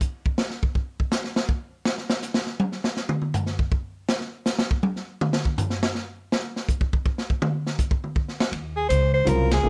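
An open jazz kit with a boomy kick and dark cymbals plays alone for 8.5 seconds in a cool, hypnotic modal jazz excerpt swinging in 3/4 at 162 BPM, then woody pizzicato upright bass arrives on an Ebm11 chord, a breathy soprano saxophone enters at 8.8 seconds and a warm baby grand piano at 9.2 seconds, just before a band accent, all captured dry and close.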